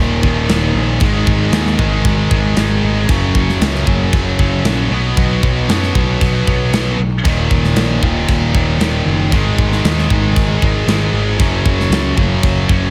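A light reverb sits around this short, relentless heavy metal excerpt at 116 BPM in a straight 4/4, cut from a longer piece, with two bright, distorted electric guitars riffing throughout: one scooped and high-gain, the other tight and up front. A fuzzy, overdriven picked electric bass anchors the low end, while an acoustic metal kit with a big-room sound, tight kick, medium-tuned snare and crashing cymbals drives from 0.2 seconds. The heavy riff moves through chords such as Eb5, Ab5, B5 and Ebm before settling on Gb5.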